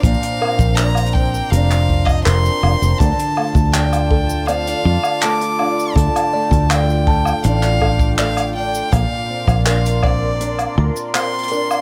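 Pastoral and hopeful, this short folktronica fragment sets a clear, smooth bowed violin melody with vibrato and digital delay over a warbling, nostalgic lo-fi pad with chorus sitting in the background, a boxy fingerpicked acoustic archtop guitar playing arpeggios, a punchy, foam-muted fingered electric bass up front that drops out at 10.9 seconds, a natural brush kit with cabasa, handclaps, hi-hat and woodblock, a punchy kick, and a delicate, tinkling vintage music box with tape echo adding a second line from 0.4 seconds, all in a small room with light reverb.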